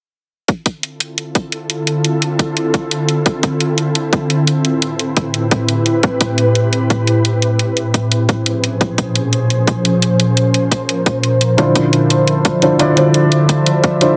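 A lightly reverberant, up-front mix carries this rolling, melancholic liquid drum and bass excerpt, where a tight, overdriven electronic kick and bright, overdriven hi-hats drive beneath an ethereal, detuned sawtooth pad that pumps with sidechain and is thickened by ensemble chorus over Dm9, Am9 and Bbm9 chords, until a soft, felt-muted upright piano with audible action noise and digital delay enters at 11.6 seconds.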